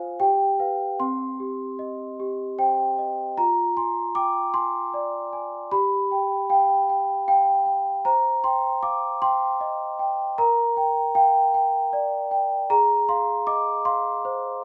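Wistful and fragile, this short classical lullaby in C minor, cut from a longer piece, drifts at 77 BPM in a straight 3/4, with a large solo celesta, bell-like and sweet, ringing up front between C4 and D6 through a moderate recital hall reverb while the harmony moves from G7 to Cm, then through Ddim/F, Gm/Bb and Fm/Ab after a new section begins at 3.4 seconds.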